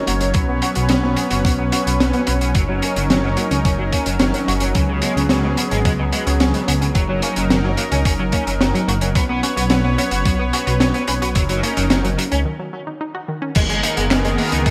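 Bright 1980s-style digital production bathed in a lush hall reverb opens this uplifting, nostalgic synthwave passage at 109 BPM in F# major, cut from a longer piece, where a brassy, bold analog pad with chorus and sidechain pumping carries sustained chords through Bsus2, F#6 and C#7sus4. A round analog pluck with 12-bit sampler grit and digital delay plays arpeggios in the background, while an electric guitar at the edge of break-up picks a riff through analog chorus, a low-pass filter and delay. Underneath, a deep, rumbling detuned saw bass pumps up front beside a thumpy, tape-warm electronic kick and a crunchy, gritty breakbeat kit with a high-tuned snare, handclaps and dark cymbals in gated reverb, with a break at 12.5 seconds before a closing G#madd9/F# section at 13.6 seconds.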